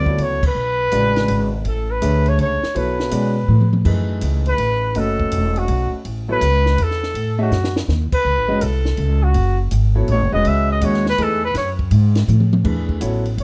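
A dark, warm production with light reverb frames this hypnotic, intense modal jazz passage, cut from a longer piece and swinging briskly at 164 BPM in 3/4. The band hits an accent at 0.4 s over an E13sus4 chord, then settles into F# dorian at 3.9 s on F#m9, where the trumpet takes its solo, and the harmony turns to B13sus4 at 12.6 s. The trumpet carries the melody up front with light vibrato and a roomy, distant jazz tone. Beneath it, a clear concert grand piano accompanies with deep bass and long sustain, while the pizzicato upright bass sits prominently with a woody, growly steel-string sound. A compact cocktail drum kit in a tight booth adds dark cymbals, a high-tuned snare and a tight kick, with short fills at 3.5, 7.5 and 12.3 s.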